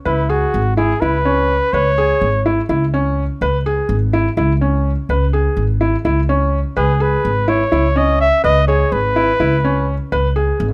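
Urgent and hypnotic, this contemporary chamber piece moves in 7/8 at 250 BPM in eighths, resting on a C#m7 chord in C# minor in a cut from a longer work. A felt-muted upright piano plays soft, intimate arpeggios throughout, while a woody, thumpy pizzicato upright bass anchors the low end. A flugelhorn sings the melody with vibrato and scooped notes from 0.1 to 2.5 seconds and returns at 6.8 seconds, all captured up close and detailed with light reverb.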